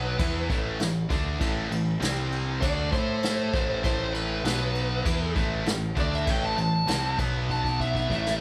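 Recorded as a band playing live in one large studio with moderate reverb, this driving, aggressive hard rock cut in A minor at 99 BPM features a dark, overdriven biting lead guitar soloing throughout, over two bright picked rhythm guitars (an overdriven one in the background and a tight distorted one) playing riffs, a growling, up-front picked electric bass, and a vintage brush drum kit with a punchy kick, dark cymbals and a rolled-off top that enters at 0.2 seconds and plays a fill from 7.5 seconds.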